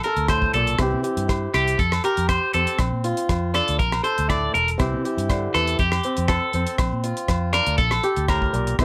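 A straight, steady 4/4 groove from a damped 70s drum kit with dry hi-hat, tight kick and rim click drives this carefree, sunny highlife guitar band excerpt, where a bright, twangy electric guitar at the edge of break-up plays arpeggios up front with phaser and slapback echo beside a boxy, fingerpicked swing-style acoustic guitar full of finger squeak, while a dark, round, foam-muted vintage electric bass joins at 0.2 s and ringing agogo bells enter at 0.3 s in the background, all over chords such as Bbmaj9, C and Fsus2 in a light reverb.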